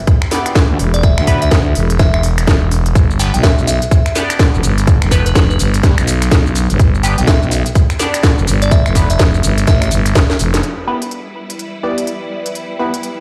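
Swaggering and bouncy, this swung bass house excerpt rides a tight, up-front kick and a crisp garage kit of cracking snare, hi-hat, shaker and finger snaps under a growling, saturated FM bass with a filter sweep, nasal band-passed chord stabs with phaser and delay, and a faint glassy bell melody, before a drum fill at 10.3 seconds opens onto lush studio strings and a dark, cloudy granular pad while the stab's filter sweeps.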